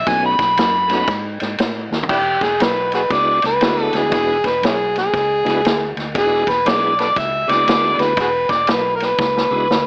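An AM-radio sound with light reverb frames this gritty, rollicking electric blues shuffle, cut from a longer piece and swinging in 4/4 at 118 BPM in E mixolydian. An overdriven, amplified harmonica carries the melody up front, opening with a solo over the first 2.1 seconds, its tone gritty with light vibrato and tongue slaps in a jazz-inflected style. A bright tonewheel organ fills in the accompaniment, shouting and full, with light overdrive, chorus vibrato and a slow rotary speaker. Underneath, a vintage muted fingered electric bass sits low in the mix with a dark, round, foam-muted tone. The vintage acoustic drum kit comes across punchy in the kick, with a medium-tuned snare and dark cymbals under a rolled-off top, adding fills at 1.8 seconds and again from 9.2 seconds, while the harmony moves from B7 to E7 at 2.1 seconds.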